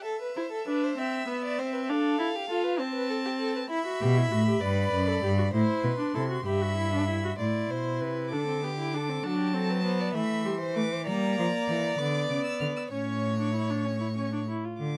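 A rich, up-front bowed cello enters at 4.0 seconds beneath this solemn, driving baroque-style string quartet fugue in A minor at 65 BPM in 6/8, where a distant first violin sings the melody with vibrato and expressive portamento, a close second violin shapes its line with soft attacks, vibrato and portamento, and a smooth, even, warm viola supplies accompaniment, all captured by close, detailed microphones in light reverb.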